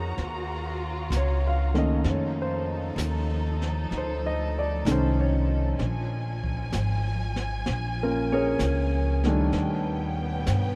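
Smoky and intimate, this slow swung jazz ballad excerpt at 64 BPM moves through Ebm7, F7b13, Bbm7 and B7alt chords, with an up-front grand piano of short sustain comping over a woody, pizzicato upright bass with steel strings. A dark, bowed studio string section holds sustained chords with vibrato and expressive portamento, while a dark, rolled-off brush kit with a high-tuned snare and boomy kick enters at 0.2 s. A huge ambient reverb places the ensemble in a vast, echoing space.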